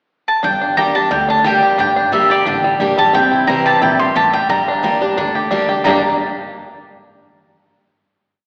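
A round, double-stringed mandolin opens with a pickup at 0.3 s and carries the motif-based lead of this rustic, lonesome bluegrass piece in G dorian at 177 BPM with a light swing. It is joined at 0.4 s by a full-bodied jumbo acoustic guitar alternating bass and strum with runs and audible finger squeak, a bright, twangy banjo rolling three-finger arpeggios up front, and a dark, woody upright bass plucking two-beat root-and-fifth lines with walk-ups. The harmony moves from Gm to C and back to Gm, closing on a final chord at 5.8 s, heard from further back in a reverberant concert hall with an AM-radio sound.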